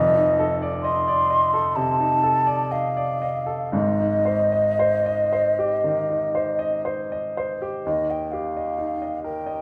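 In a freely rubato 4/4, this pastoral, dreamy impressionist classical duo sets an airy, hollow concert flute singing the melody high with gentle vibrato and soft attacks over a polished, up-front baby grand piano accompaniment, both bathed in a recital-hall reverb as the harmony drifts from F6 to Abmaj7 and settles on Ebadd9 at 7.9 seconds in this brief fragment of a longer piece.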